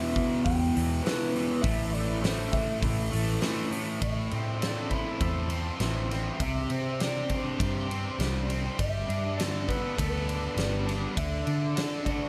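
Shoegaze-leaning rock with a dream pop haze, this dreamy, brooding piece is cut from a longer work and moves in a straight, steady 4/4. A bright, double-tracked fuzz guitar sits up front with a compressed, distorted riff, its picked tone thickened by lush chorus. Underneath, a vintage electric bass played with a pick and foam-muted gives a dark, round, amped low end. Entering at 0.2 seconds, a huge arena drum kit recorded in a big room delivers a punchy kick, a fat snare, hi-hat and ride cymbal with a natural, acoustic presence. Further back, a fingered electric guitar through a small old amp carries the melody in a slightly broken-up, shadowy voice, coloured by phaser and slapback echo. Light reverb surrounds the mix, and the harmony moves from Em and A5 to a new passage at 4.0 seconds that passes through Am, Csus2, Gadd9 and D.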